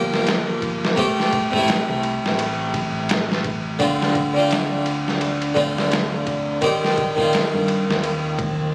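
Trip hop with a hypnotic, dark mood, heard in a short cut from a longer piece, with a swung sixteenth-note feel over Gm7, Am7, Dm7 and Cm/Eb chords. A brilliant, plucked harpsichord sits up front carrying the accompaniment through tremolo and tape echo, while a round, deep dub fingered electric bass anchors the low end and a sampler-style kit, pitched down and muffled with a thumpy kick and medium-tuned snare, adds ride cymbal from 0.1 s. The whole recording has a phone-in-the-room quality bathed in club reverb, giving it a digital ambience.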